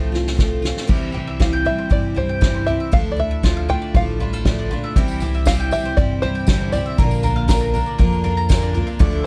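Indie folk with a bittersweet, yearning feel and a building arrangement, cut from a longer piece, where a plunky, twangy open-back banjo carries the melody over a fingerpicked steel-string guitar, a shimmering octave-doubled twelve-string, a thumpy pizzicato upright bass and an up-front soft-mallet drum kit with a fat snare and boomy kick that opens with a fill, joined at 0.9 s by mandolin arpeggios, then by a jingly tambourine in the background at 5.0 s, before a brilliant, slightly detuned upright piano and a very quiet brass ensemble with light vibrato arrive at 9.0 s, all captured in a dry, close 1970s-style studio sound.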